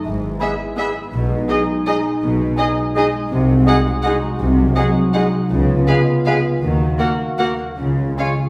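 This is an orchestral ballroom waltz in a swaying three-beat metre, taken with a rubato feel that gives it an elegant, festive poise in this short excerpt cut from a longer piece. From the first moment a concert harp rings out arpeggios in the background while a mellow, distant French horn section holds sustained chords, and at 0.1 s muted cello and double bass sections join with a close, veiled bass line. At 0.4 s the muted violin section carries the melody with dark, lush vibrato, joined by second lines from a bright oboe, an airy, hollow flute section, a second muted violin section in the background and a clarinet heard distantly behind. A very quiet, roomy bassoon and a very quiet con sordino viola section fill in the accompaniment. The harmony moves through E/G#, G#m/B, G#7/B#, C#7 and D#m before settling on C#, all set in a stone room reverb.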